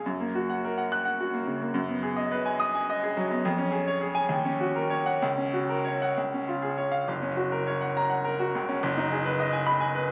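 A bright baby grand piano plays alone through this short excerpt of a classical virtuoso study in F# major, its brilliant, up-front tone spanning from deep bass to high treble with a heroic, sparkling mood. The 6/8 metre moves at roughly 63-73 BPM in dotted quarters with a rubato feel, the harmony circling from F# through G#m7 over an F# bass, C#, and D#m7 before returning home. A wet recital hall reverb surrounds the playing, heard through the crackle of a very old 78 rpm record.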